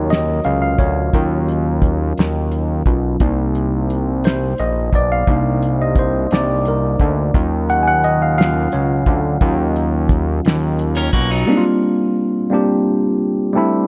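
A worn, slightly out-of-tune tine electric piano takes the lead in this late-night, sultry fragment of slow R&B, its mellow tone lightly overdriven through a combo amp and colored by a phaser as it solos up front from the opening. The tempo is an unhurried 58 BPM in 6/8, with the harmony moving from Ebm9 to Cm9 and back to Ebm9. Beneath it, a fat, nasal analog bass with a detuned sawtooth edge and a plucky filter attack sustains its notes up front, while a dry, cloth-damped acoustic kit adds a thick snare, a tight kick and hi-hat with a dark, rolled-off top. Near 11.0 seconds a compressed, picked electric guitar at the edge of break-up slips in for a brief second line, shortly before the harmony turns to C9sus4 at 11.5 seconds. The electric piano carries on through the close at 13.9 seconds, all within a small, intimate room sound.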